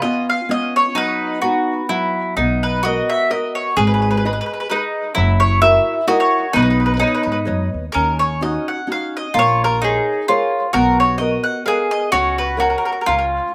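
A lilting 3/4 swing at 129 BPM carries this romantic, lively Italian folk serenade in B major, taken from a longer piece. Two picked, double-strung mandolins sit up front: one sings the melody with a mellow, round tone, while the other plays a woody second line touched by slapback echo, over warm fingerpicked classical nylon-string guitar. A pizzicato upright bass on steel strings enters at 2.4 seconds, the tune moves into a new section at 8.0 seconds, and the whole is captured dry outdoors.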